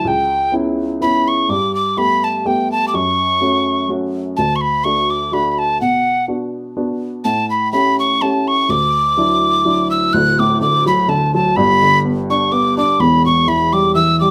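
A moderate studio reverb surrounds this rollicking, lively Celtic waltz cut from a longer piece, where an up-front, hollow tin whistle carries the melody with airy chiff, tongued notes and vibrato over a dark, woody upright piano accompaniment, with the tune moving into a new section at 10.1 seconds.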